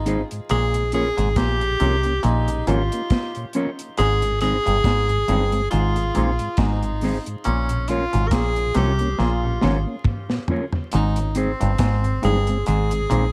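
Warm and laid-back, this roots reggae excerpt at 69 BPM sets a smooth, up-front tenor saxophone with light vibrato and tape echo over a round, foam-muted dub bass, a dry, dark drum kit with dub echo and a fill from 9.2 to 10.9 seconds, a nasal, overdriven clav riff entering at 0.5 seconds, and a clean background guitar and flute-like organ with slow rotary speaker, all moving between Bbm and Ab under light reverb and vinyl crackle.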